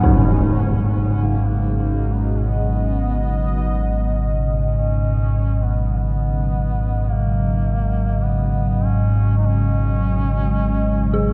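Dark ambient drone at 51 BPM in G# minor, this desolate excerpt holds a single G# minor chord as an evolving, detuned analog drone sits up front with lush chorus and a filter sweep, a bright, resonant pad sustains chords with chorus, an eerie, inharmonic FM bell murmurs arpeggios in the background through chorus, phaser and tape echo, and a solo duduk fades in with vibrato, scooped notes and tape echo, all within a moderate cathedral reverb.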